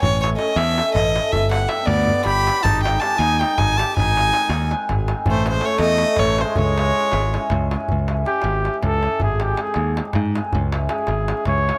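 Virtuosic and bittersweet, this Balkan wedding-band excerpt races along at 320 BPM in eighths in a straight 7/8, set in C# Hungarian minor with light reverb. A close, nasal, reedy solo violin with an airy, gut-string bow carries the melody up front until 7.5 s, over shimmering hammered cimbalom, a punchy, bright picked electric bass and a crisp, deep, compressed metal-shell darbuka sitting in the background. A warm, classical-style trumpet joins at 1.8 s as a second line and then takes a solo from 7.9 s to the end.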